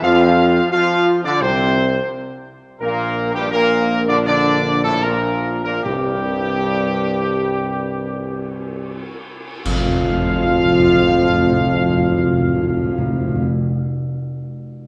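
In a straight 4/4 that slows from about 87 toward 55 BPM, this regal, majestic classical fanfare excerpt sets an up-front mellow trumpet section on the melody over distant, dark French horns, warm trombones with a smooth top and a soft-attack tuba bass, all in a reverberant concert hall, with close, dry cymbal swell, clash cymbals and concert bass drum entering at 5.8 seconds, articulate hard-mallet timpani at 5.9 seconds, and a full band accent landing at 9.7 seconds.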